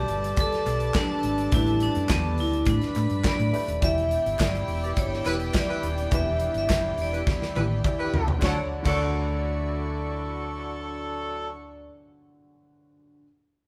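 A ringing, hard-mallet vibraphone carries the melody of this glamorous, celebratory disco excerpt from the start. Beneath it sit a round, punchy hollow-body electric bass, a brilliant baby grand piano in the background, gut-toned chamber strings holding chords, an intimate sul tasto violin section on a second line, and a present horn section adding pop-style stabs. A tight, up-front acoustic drum kit drives the band, joined at 0.7 s by very quiet, crisp group handclaps, and its fill at 7.3 s leads into the final chord change, while the band plays live together in a moderate stone room and the piano carries on by itself from 11.9 s until 13.2 s.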